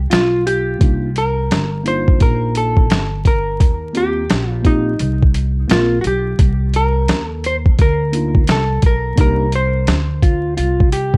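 A dark, clean hollow-body jazz guitar carries the melody over a woody pizzicato upright bass, while a dark, fingered second guitar line appears briefly in the opening break and returns at 10.2 s. A swung, gritty boom bap drum kit with a thumpy kick up front drives this smoky, nocturnal jazz-hop groove from 0.1 s, and at 0.8 s a mellow tine electric piano settles in, comping through Cm11, Eb69 and Cm9 chords. The dark production is wrapped in light reverb and vinyl crackle, and the passage is cut from a longer piece.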